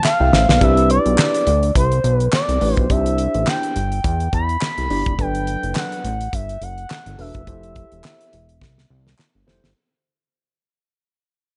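Early-eighties boogie funk with a smooth, danceable swing, this brief cut opens on a drum fill and fades out from 0.6 s over Cmaj9, Gmaj9 and Fmaj9 chords. A thick, saturated analog bass with a filter sweep and a dry, damped 70s drum kit with a tight kick, fat snare and gated reverb sit up front, while a mellow tine electric piano with phaser provides the accompaniment and hollow group handclaps sound from a small room in the background. Over the top, an expressive synth lead blending sawtooth and triangle tones carries a dark, soft-attack melody with chorus and vibrato, and a second drum fill arrives at 8.6 s.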